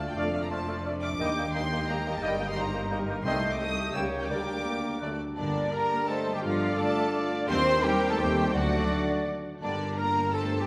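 A wet concert-hall reverb bathes this stormy, urgent classical excerpt in G minor at 171 BPM in 3/4, where a lush violin section sings the melody over clear second violins, dark cor anglais, airy flute and clarinet lines, while violas, a bright ringing harp playing arpeggios, cellos and double basses drive beneath, a clear bassoon accompanies until 5.1 seconds, trombone and dark French horn sections hold chords, a mellow trumpet adds stabs, and a very quiet tuba joins the bass at 5.4 seconds.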